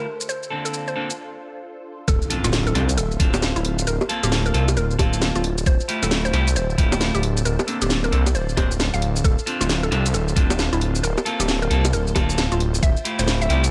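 A skippy, soulful stretch of UK two-step garage, cut from a longer piece, moves at 134 BPM with a swung sixteenth-note feel and a clean, produced sheen set in digital ambience. A woody, warbling mallet-like synth pluck carries the melody through chorus and tape echo. A silky string machine holds soft, very quiet chords beneath it, and picked stabs from a clean electric guitar are roughened by vintage 12-bit sampler grit and a low-pass filter. The garage kit brings a cracking snare, bright hats, bongos and shaker up front from 0.2 seconds, and a short break leads into the drop at 2.1 seconds. There a deep, rumbling detuned saw bass with tube saturation and an overdriven, knocking electronic kick arrive alongside a very quiet impact. The harmony circles between Bbmaj9/D, Dm7 and Fmaj9/D, giving the groove a mellow, soulful colour.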